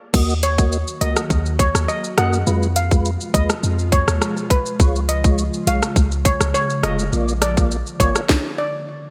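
Sultry and bouncy, this dancehall excerpt moves at 103 BPM in Eb minor with a bright 1980s-style digital sheen and light reverb. Up-front electronic drums with a tight kick, sharp snare, dark hats, rim click, crash and shaker ring through gated reverb over a deep, boomy 808-style bass. A lightly overdriven tonewheel organ with chorus vibrato, key click and slow rotary speaker provides accompaniment, and an ethereal, detuned pad with sidechain pumping sits in the background as a shimmering, metallic steel pan carries the melody through digital delay, before a stop at 8.3 s closes the clip.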